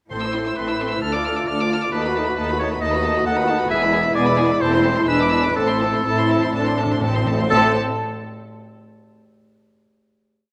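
This short, complete piece is a quick classical-period movement for symphony orchestra in A minor, moving at 122-136 BPM with an urgent, restless mood. From the first moment, muted violin sections, veiled by con sordino, carry a rocking two-note figure, with the melody on top and a second violin line in the background. Violas add their own soft-attack rocking figure and answer at phrase ends, while cellos mark bass on the beats and double basses double the bass line with a smooth top. A warm, punchy oboe sits up front with vibrato, and a mellow French horn section holds sustained chords behind it. Timpani played with soft mallets give round single strokes on bass notes, returning at 3.7 seconds and rolling through a fill from 5.6 to 7.5 seconds before a final chord rings in the scoring stage reverb until 9.4 seconds.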